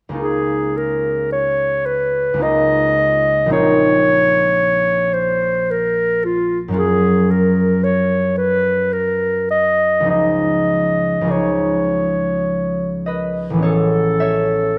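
Dreamy and pastoral, this impressionist classical excerpt for clarinet and harp drifts in a rubato three-four, with a clear, punchy clarinet carrying the melody up front over fingerpicked, ringing concert harp chords that move from Db69 through Bbm11 and Gbmaj7 to Dbadd9 before shifting to Amaj9 at 13.6 seconds, the duo heard in a moderate recital-hall reverb.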